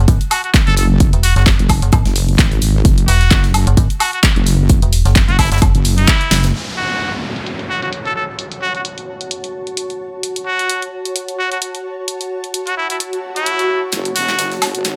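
A metallic FM bass with tube saturation and sidechain pumping opens this aggressive, bouncy bass house cut at 130 BPM in F# minor, joined by a punchy, up-front electronic kick, a house kit of handclaps, filtered hats, snare and woodblock, a very quiet tight metal kit, a heavy detuned wobble bass with chorus, and a nasal, brilliant straight-muted trumpet playing jazz-style solo lines with delay over a swung 16th-note groove. As the basses and kick fall away around a band accent and drum fill at 6.3 seconds, an electronic downlifter and swell and a cloudy, evolving granular pad enter over an F# minor chord. At 13.9 seconds the wobble bass and metal kit return with a drum fill into a build-up, all set in light reverb.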